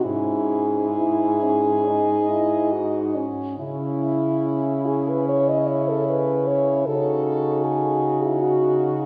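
A wet church reverb with a long 2.9-second decay surrounds this short excerpt from a longer classical piece for horn quartet in C# minor, moving in a rubato 4/4 at 63-77 BPM with a yearning, elegiac mood. A clear French horn with light vibrato and a vintage character carries the melody, while an up-front warm horn sings a second line in the same range. A distant, roomy horn in the background holds the accompaniment, and a clear bass horn from 0.1 seconds anchors harmonies that move from C#m/G# to a half-diminished D#m7b5/C# at 6.9 seconds.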